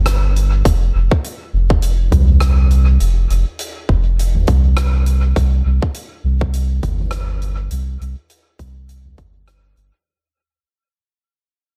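A deep, round sub bass sits up front and carries this hazy, spacious ambient dub fragment, its soft, mellow tone holding sustained notes between F1 and C2 with a fast attack. The tempo is 102 BPM in 4/4, with a gentle swing on the sixteenths that keeps the groove loose. A tight electronic kick drum, re-recorded in a large room and placed up front with studio reverb, joins at 0.7 s and drops out at 9.3 s. Underneath it, a soft-mallet acoustic drum kit plays hi-hat, rim clicks and toms at a low level, its natural hall sound stretched further by studio reverb and dub echo. The overall mix stays fairly dry, and a fade-out begins at 3.8 s as this cut from a longer piece drifts away.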